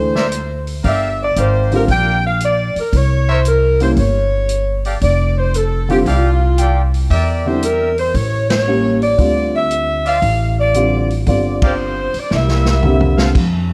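Sultry and brassy, this swinging big band jazz excerpt sets an up-front saxophone section on the melody over dark upright piano, woody pizzicato upright bass and a vintage drum kit with rolled-off cymbals, while a clear trumpet section adds stabs, the band hits accents at 8.4 and 11.5 seconds, and a trombone section with light vibrato enters on a second line during a closing drum fill from 12.3 seconds.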